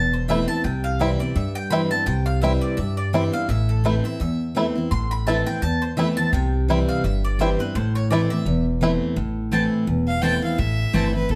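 A moderate studio reverb surrounds this short, rustic and lonesome bluegrass cut in A minor, swinging at 169 BPM as it moves between A minor and C. A full-bodied, up-front picked acoustic guitar and a woody, thumpy pizzicato upright bass carry the accompaniment, while a bright mandolin takes the lead with stabs and a twangy banjo plays fingerpicked arpeggios until about 8.9 seconds. At 10.1 seconds a close, biting fiddle with light vibrato and an airy bow picks up the solo on a second line.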